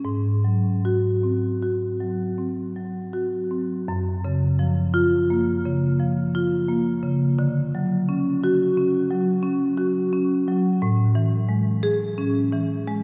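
Playful and flowing, this 13-second contemporary classical excerpt for solo marimba drifts freely in a rubato 5/4, its woody, dark rosewood tone struck with medium hard mallets and bathed in a long cathedral reverb heard from further back in the room, as an opening Ab7 gives way at 3.9 seconds to a new section moving through Gbmaj7, Dmaj7 and Amaj7.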